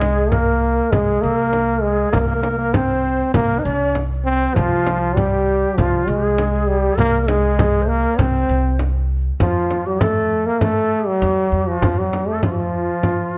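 A punchy, jazz-style trombone with vibrato leads this festive Persian modal ensemble passage up front, with an airy, reedy end-blown ney carrying a second line, while a woody pizzicato upright bass and a deep, dry frame drum played with soft hands hold the ground under light reverb.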